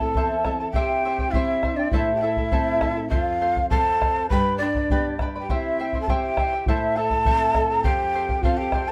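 This Andean folk ensemble piece, cut from a longer performance, is festive and earthy, moving at 101 BPM in a straight 2/4 in A minor. All five parts play together for the full 8.9 seconds. A large wooden quena carries the melody up front, breathy and mellow, with vibrato, a crisp chiffing attack and a slightly unsteady, distant quality. A bamboo pan flute adds a reedy, airy second line beneath it, tongued and sitting further back. A fingerpicked charango's doubled strings give a shimmering accompaniment, while a full-bodied nylon-string guitar fills the low end, and a dark bombo thumps close in front. The band sounds as if it is playing live together in a small room with a moderate half-second reverb, cycling through chords such as Am, C, F and G.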